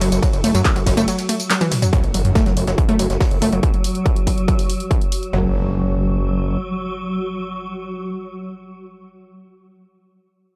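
A straight, driving 4/4 pulse anchors this industrial, hypnotic slice of peak-time techno, built on an overdriven, distorted kick placed up front, a tape-warm analog drum machine of handclaps, hi-hat, ride cymbal, tambourine and toms, and a very quiet brushed kit of hi-hat and snare heard in a small room. A nasal, aggressive sawtooth bass with oscillator sync, filter sweeps and tube saturation pumps under sidechain, while a warbling, detuned unison pluck riff with analog delay plays alongside a swarming, granular drone that holds on until 9.0 s. After a short break and drum fill, a background electronic impact arrives at 1.9 s, all within a dry, gritty hardware recording with a digital ambience.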